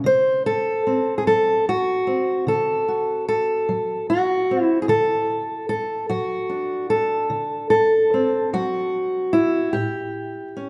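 A fingerpicked steel-string acoustic guitar carries this short solo fragment of acoustic country blues, its dark, up-front tone ringing out in a straight 12/8 feel at a relaxed 49 beats per minute. The mood is laid-back and gritty, with the guitar sitting on a D7 chord for most of its 10.7 seconds before shifting to A7 at 9.8 seconds. A moderate hall reverb wraps the playing in the open resonance of a church or concert space.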